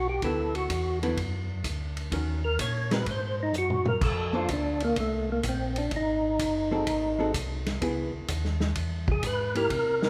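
A moderate recital-hall reverb, about 1.7 seconds long, surrounds this soulful, late-night soul jazz organ trio excerpt, cut from a longer piece and swinging in 4/4 at 127 BPM. Up front, a fat, percussive tonewheel organ carries the melody as a solo throughout, its third-harmonic percussion and key click ringing through a slow rotary speaker with chorus vibrato. A second tonewheel organ supplies a round, mellow bass line, dark and clean, also turning through a slow rotary speaker. A miked and amplified hollow-body archtop guitar adds picked, compressed comping, while a dry, mid-forward acoustic kit with a tight kick, medium-tuned snare and a rolled-off top keeps time and drops in a short fill from 3.5 to 4.0 seconds. The harmony moves through rich chords such as D69, A#maj9 and G#7b9 before settling on C#m7.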